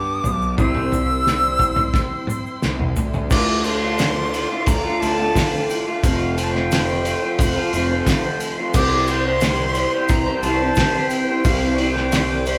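Hypnotic and dark, this psychedelic rock excerpt sets a reedy, airy flute melody above a phased, slightly broken-up guitar riff, a round fuzz bass, lush distant strings holding sustained chords, a grainy shaker in the background and a muffled, thuddy drum kit whose fill at 1.9 seconds leads into the minor-key groove at 3.3 seconds, all played live in one room with moderate large-studio reverb.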